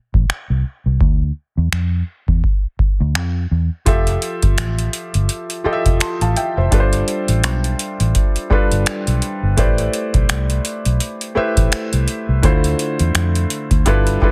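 Late-night and sensual, this contemporary R&B excerpt moves at 84 BPM in 4/4 with a swung 16th-note feel. A booming analog drum machine with a deep kick, metallic hi-hats, finger snaps and a softly clipped snare sits up front beside a dark, round, foam-muted electric bass. At 3.9 seconds a mellow felt-muted upright piano joins with audible action noise, moving through chords like Fmaj9, G7sus4 and Am11 in a dry, dense and heavily limited mix.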